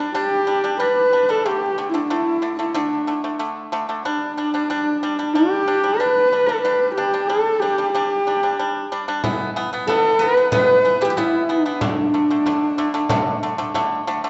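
Steeped in a dark, reverberant recital-hall sound, this brief excerpt of galloping, vast Mongolian folk puts a husky, woody horsehead fiddle melody up front with light vibrato and portamento over bright, percussive pipa arpeggios, while a small, distant frame drum joins at 9.2 seconds and a silvery, ringing guzheng adds a second line in the background from 9.9 seconds.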